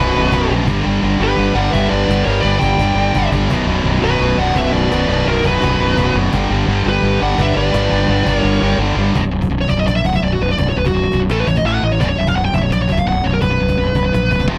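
Opening on a dark, high-gain lead guitar melody with tape echo, shadowed by a quieter second lead line, over three bright distorted rhythm guitars churning out riffs and a growly, fuzz-laden fingered bass up front, this epic, aggressive heavy metal piece in B minor at 169 BPM moves in a half-time feel with a snappy cajon in the background, until the lead breaks into a solo at 9.2 s over B5 and A5 power chords in a warm, lightly reverberant mix.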